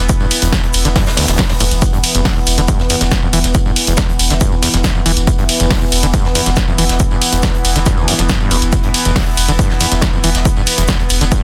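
Intense and relentless, this driving peak-time techno excerpt in E minor at 139 BPM pairs a punchy, tape-warm electronic kick and an up-front analog drum machine of hi-hats, ride cymbal, snare and tambourine with a very quiet acoustic brush kit of hi-hat, shaker and snare in a small room, while a deep, thick saturated sub bass pumps against the kick beneath a squelchy, gritty, filter-swept acid bass riff and an evolving, detuned, chorused analog drone, all under light reverb in a dense, heavily limited modern master.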